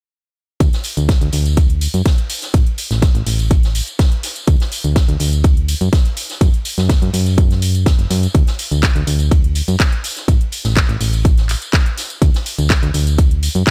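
Piano house at 124 BPM in D major, euphoric and feel-good, this excerpt from a longer piece runs as one steady section from 0.6 to 13.7 seconds. A punchy, up-front electronic kick leads the drums, joined by a house kit with metallic hats and handclaps, a soft-mallet kit whose filtered hi-hat and medium-tuned snare sit far back, and a compressed, saturated tambourine. Underneath, a round, dark FM bass with a fast attack pumps with sidechain compression, and the whole mix has a dry, gritty hardware character with transformer saturation.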